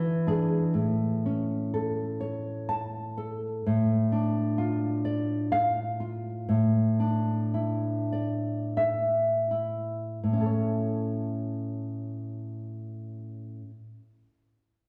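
A lone nylon-string guitar sits up front in this romantic classical solo, its dark, full-bodied tone carrying a deep, thumb-plucked character along with an audible finger squeak. The piece moves in 3/4 at a rubato pace between 39 and 65 BPM, and the mood is sunny and warm. Set in A major, the harmony opens on E7 before settling onto A, then turns toward Dm/A and Asus4 and comes home to A at 10.2 seconds. The playing slows from 2.2 seconds until that return, lending the phrase an unhurried ease. The guitar spans a range from A2 to A5 and rings out until 13.8 seconds within a wet recital-hall reverb, the sound of a church or concert hall giving each note a lingering glow. This passage is cut from a longer piece.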